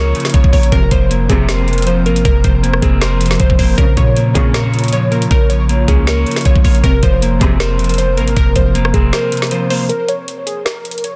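An up-front trap drum kit, with a knocking kick, metallic hats, rim clicks and a woody snare, drives this menacing, brooding half-time trap excerpt at 157 BPM, over a deep, boomy 808-style bass that drops out at 9.1 seconds as the harmony moves between Bbm and Fsus4. Glassy, detuned digital keys carry the melody through chorus, delay and a filter sweep, while a slightly broken-up, compressed electric guitar accompanies and an ethereal FM pad holds chords in the background until 9.9 seconds. Dark, distant bowed string stabs with vibrato and delay add symphonic weight, a barely audible downlifter opens the cut, and the dense, heavily limited master sits in a digital ambience.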